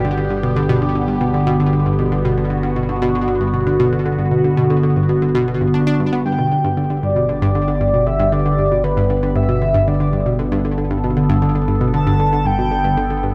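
Ambient, sequencer-driven space music with an expansive, cosmic mood, built on a Gmaj7 chord where a round, detuned analog pluck riff with tape echo and a swirling, nasal phased pad ride over a mellow, warbling analog drone in the bass, and at 6.3 seconds a breathy, flute-like synth lead with vibrato joins them to carry the melody, all bathed in a wet plate reverb.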